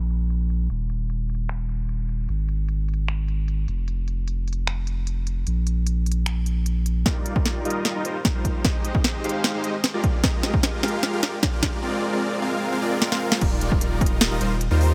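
A light reverb and a gentle low-pass filter shape the whole mix, giving this future bass excerpt a soft, rounded finish. A deep, saturated sine sub bass and a trap kit of crisp hats, finger snaps, a sharp snare and crash cymbal open the piece in a half-time feel. The kit runs through a filter sweep while the bass pumps with sidechain. At 7.1 s, huge detuned supersaw chords with a sub octave and delay arrive under their own filter sweep, moving through Ebmaj9, Abmaj7, Fm11 and Bb9 during a build-up studded with drum fills. A punchy, overdriven electronic kick enters at the same moment, layered and carrying the ring of a large room. At 13.4 s the drop lands back on Ebmaj9, the bright, lush stack pumping over the thick low end for a playful close.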